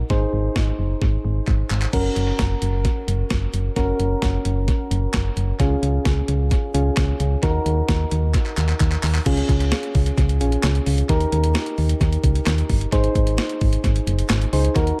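A punchy, round FM bass sits up front in this nostalgic, bright synth-pop excerpt at 131 BPM in Db major, driven by a clean 12-bit drum machine with a thumpy kick, medium-tuned snare, handclaps, hi-hat, crash cymbal and tape echo, with fills at 1.5 and 8.3 seconds, while soft, warbling electric-piano-like synth keys with chorus and tape echo sit behind through chords moving from Ab to Gb, Db, Ebm, Db, Eb and Ab, set in a light reverb and an echo-heavy mix that carries some lossy compression artefacts.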